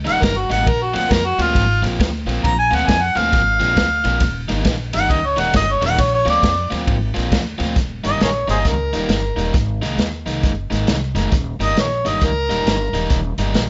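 Soulful and gritty, this excerpt from an electric blues shuffle swings at 135 BPM in Eb mixolydian, moving through Eb, Bb9, Eb7 and Ab9 over roughly 13.7 seconds. A mellow, roomy harmonica with overdrive sits up front and takes a solo from the start until 7.8 seconds, its soft attack coloured by tongue slaps and scooped notes in a jazz style. An overdriven semi-hollow guitar plays a picked riff over woody pizzicato upright bass and a vintage small-room drum kit with dark cymbals, a punchy kick and a medium-tuned snare, all under a light reverb and a rolled-off top.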